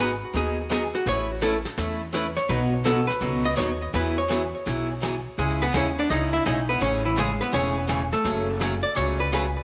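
A moderate echo-chamber reverb and small-room ambience surround this short swinging cut from a longer western swing piece, with faint lossy compression artefacts in the sound. At 167 BPM in a lilting swung 4/4, the mood is playful. Up front, a dark, clean hollow-body archtop guitar takes a picked solo across the whole 9.6 seconds, its amplified tone trailed by tape echo. Beside it, a bright, boxy parlour-style steel-string acoustic with fresh strings picks the accompaniment, finger squeaks audible. Underneath, a woody, thumpy upright bass with gut strings plays pizzicato. A vintage brush kit slips in at 0.4 s, set in the background with a rolled-off top on brushed snare and hi-hat, as the chords move from G#m7 through Aadd9, B, Eadd9, C#m and Amaj7 to F#madd9.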